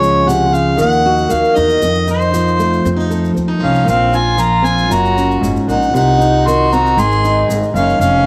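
A straight 4/4 pulse carries this reflective, melancholic acoustic folk passage, cut from a longer piece, as a distant, roomy harmonica carries the melody up front over a bright fingerpicked steel-string guitar accompaniment, also up front, both colored by cassette tape. A woody, growly pizzicato upright bass anchors the low end, while a grainy egg shaker stays far back in the background. At 3.6 seconds a nasal, reedy bowed fiddle with a gut-string tone enters on a second line, also tape-tinged, as the chords move through a wistful mix of major seventh, suspended and diminished colors in a small room with light reverb.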